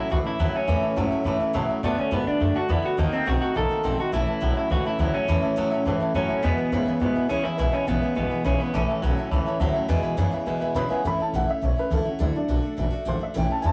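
A slightly broken-up, twangy electric guitar through a small old amp carries the melody up front in this retro, rollicking rock excerpt at 208 BPM in A major, dropping out at 9.6 s. Beneath it sit a thumpy upright bass with gut strings, a bright picked dreadnought acoustic guitar with audible finger squeak, and a clean second electric guitar playing a riff until 11.0 s, while a dark, mellow upright piano adds brief fills before taking a solo from 11.0 s. The rough rehearsal-room sound carries light reverb and warm saturation.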